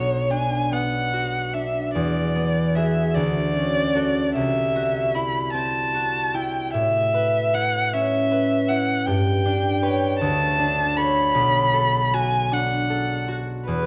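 Rocking in a loose, rubato 6/8 at about 51 dotted-quarter beats per minute, this wistful and mysterious impressionist duo in B minor drifts through colors like Eadd9, Dmaj7 and Aadd9 before settling on Bm7. A warm, bowed solo violin carries the melody up front with soft attacks, expressive vibrato and gliding portamento, while a bright concert harp, fingerpicked and ringing across its low and middle registers, supplies the accompaniment. A moderate recital-hall reverb surrounds the pair in this passage cut from a longer piece.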